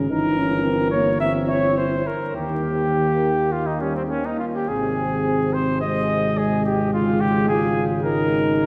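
A classical brass quintet piece cut from a longer work, triumphant and warm in mood, moving at 105 BPM in 4/4 with a rubato, uneven pulse over chords from Eb13b9/G through Eb and Ab to Bbm7/Ab. A bright, close-miked trumpet carries the melody up front from 0.1 seconds, joined by a mellow flugelhorn second line in the background, while a dark French horn with a soft attack and smooth top, a very quiet close-miked trombone, and a distant, roomy bass trombone with light vibrato fill out the accompaniment and bass. Everything sits in a wet church reverb with a 3.4-second tail, overlaid with vinyl crackle.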